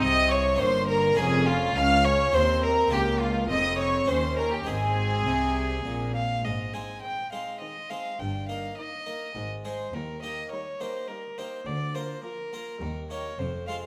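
In a straight 3/4 at 103 BPM, this brilliant, festive passage from a baroque-style concerto movement with solo episodes moves through Ab major and is cut from a longer piece. A solo violin sits up front with a gut-string, reedy period tone and light vibrato, carrying the melody between F4 and Ab5. Behind it, one chamber violin section also carries the melody higher, up to F6, while a second violin section plays a supporting second line, and a dark, distant viola section fills in the accompaniment. An airy Flemish-style harpsichord, its plucked octave strings bright, adds accompaniment, while a cello section with a smooth top and a close double bass section anchor the bass as low as F1. The harmony opens on Dbmaj7sus2 and settles on Ab by 4.7 seconds, then a second section from 6.4 seconds swings between Ab and Eb, reaching Bb/D before closing on Eb, all in a moderate recital-hall reverb.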